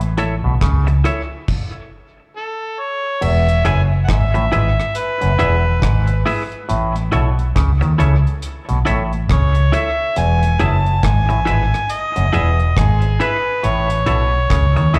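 A slow, swung roots reggae groove at 69 BPM in E major rests on a dark, round, foam-muted fingered bass sitting up front and a dry, deep drum kit with a tight kick, rim clicks, hi-hat and crash, broken by a brief stop between 1.5 and 3.2 seconds. A clean, compressed semi-hollow guitar with tape and slapback echo and a stringy, nasal clav riff through a combo amp with slapback echo fill out the A and E changes, while a mellow, vintage harmonica with scooped notes and tape echo takes the lead from 2.4 seconds. Heard as an excerpt of a live club gig through the venue's PA, the mood is warm and uplifting.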